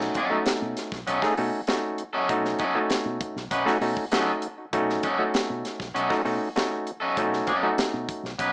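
The overdriven clav punches out percussive, stringy stabs from the first moment, its tone mellow and direct, set up front in the mix. This is a gritty, energetic funk cut taken from a longer piece, moving at 98 BPM in a straight 4/4 and sitting in B mixolydian over a B9 chord. Beside the clav, an electric guitar at the edge of break-up joins at 0.2 seconds with picked, twangy accompaniment, its warm tone bathed in spring reverb and placed up front. A tight, dry acoustic drum kit with a high-tuned snare, tight kick and hi-hat drives the groove, while a fingered electric bass runs through an envelope filter for a bright, amped and punchy low end. The whole thing sits in a moderate studio reverb with a small speaker sound.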